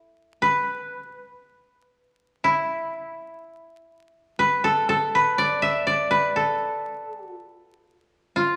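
A vinyl crackle sits under a moderate recital-hall reverb, giving this short fragment of a longer piece an aged, spacious frame. A solo acoustic koto carries everything from 0.0 to 8.6 seconds, its woody, dry tone placed up front in the sound. Played with fingerpicks, the koto stays within the range from E4 to E5, keeping the line compact and focused. The piece is Japanese traditional chamber music in 2/4 at about 60 BPM, but the rubato feel lets the pulse breathe freely. The mood is austere and calm, with the hall's gentle tail framing each plucked note.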